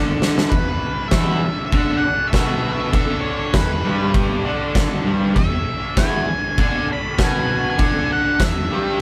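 An oversized, low-tuned acoustic drum kit dominates this swaggering, raw garage rock excerpt, its punchy kick, fat snare and dark cymbals sitting up front in a big, pumping room with a saturated, gritty edge. The drums enter with a fill at 0.2 seconds and then drive a straight 4/4 groove that stops at 8.5 seconds. Underneath, a double-tracked fuzz guitar plays the riff from the very start, its picked, distorted tone warm and up front. At 0.5 seconds an octave-fuzz lead guitar comes in with a dark, distorted picked melody set higher above the riff. The whole band sounds as if it is playing live in one room, with a moderate studio ambience binding the parts together.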